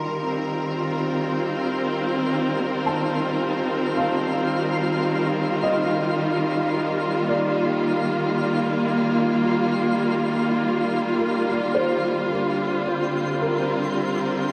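Weightless and serene, this slow ambient fragment in Eb lydian drifts at 54 BPM in 3/4, with a rich, vibrato-laden string section sustaining up-front bowed chords from Eb69 to Bb69 at 12.3 s, while a felt-muted upright piano plays soft, mellow arpeggios in the background through a diffuse delay, and a twinkling granular texture adds sparkling octave-up shimmer, all bathed in a huge reverb with a cassette-tape tint.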